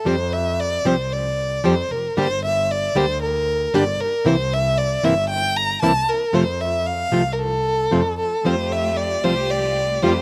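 In a rubato 4/4 feel, this melancholic, sultry tango fragment puts a warm, expressive bowed violin solo up front, with vibrato, portamento and slapback echo, over fingerpicked classical nylon-string guitar and a smooth, rich bowed double bass, until a bright, biting studio string section adds distant, lush stabs at 8.4 seconds, recorded dry and outdoors.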